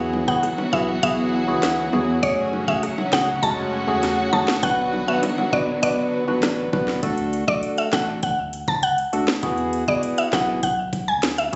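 Dancehall at 100 BPM with a bouncy, tough mood, cut from a longer piece: a hollow, up-front organ stab with chorus and a woody, detuned FM mallet-like synth pluck carrying the melody with chorus and delay ride over a deep, round sub bass and an electronic island pop drum kit with a knocking kick, sharp snare and metallic hats, while lush bowed studio strings with vibrato stop at 7.0 seconds and low-tuned vintage bongos in the background stop at 6.9 seconds, all captured on a phone in a room with light studio reverb, compression and a dull top end over chords moving from Eadd9 through F#madd9, Bm and D.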